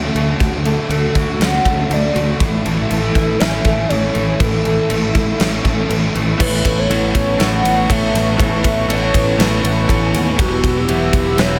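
Light reverb and a studio ambience frame this hazy, wistful excerpt of shoegaze and dream pop rock, cut from a longer piece and moving at 120 BPM in a straight 4/4. A huge arena drum kit sits up front from 0.2 seconds, with a punchy kick, medium-tuned snare, bright crash and ride cymbals and a hall-like acoustic sound, while a growling fingered electric bass adds an overdriven, bright low end. In the background, a dark, distorted fuzz guitar plays a riff through lush chorus, a clean direct-recorded electric guitar adds a compressed riff colored by reverse reverb, and a fingerpicked twelve-string acoustic guitar shimmers with octave-doubled arpeggios, finger squeak and slapback echo. Above them, a woody, clarinet-like synth lead carries the melody with a soft attack, vibrato, chorus and slapback echo. At 6.4 seconds a hollow, flute-like pad joins with detuned, full-bodied sustained chords, as the harmony moves from Dmaj7 and A to Aadd9 and then Emadd9 at 10.4 seconds.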